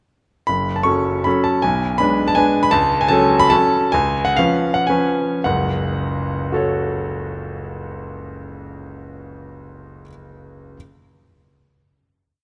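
Wistful and nostalgic, this brief, complete classical piano waltz in F# minor and 3/4 moves with a rubato feel between 99 and 168 BPM, tuned to A4 = 438 Hz. A bright grand piano plays solo from 0.5 to 10.8 seconds, spanning F#1 to C#6 with a single-line melody over a waltz bass; its tone is brilliant, polished, intimate and up front, with audible action noise. The harmony moves from F#m through G#dim/B and F#m/C# to C#7, with the music slowing from 2.2 to 5.4 seconds, then settles on a final F#m chord at 5.4 seconds that rings out into a wet concert hall reverb.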